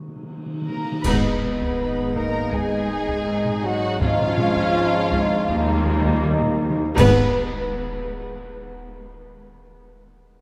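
A vast, echoing cathedral reverb surrounds this eerie, tense suspense film cue, a short cut from a longer piece at 81 BPM in 4/4 in G# dorian. Very quiet timpani struck with hard mallets open it alone with a fill before muted, con sordino violins and a dark, distant French horn section holding sustained chords join at 0.7 seconds. At 1.0 seconds the ensemble lands on a band accent over G#m, bringing in veiled violas, a background cello and double bass bass line, a heavy-stick taiko ensemble, dark clash cymbals with concert bass drum, and a thumb-plucked, ringing Celtic harp riff. Two violin sections carry a lush, vibrato-laden melody and a smooth-topped second line as the harmony moves through C#/G# and D#add9, with a second timpani fill leading to another accent back on G#m at 7.0 seconds. The strings and horns fall away around 7.4 seconds, while the taiko, cymbals and bass drum carry on until 8.4 seconds and the harp rings on until 9.8 seconds.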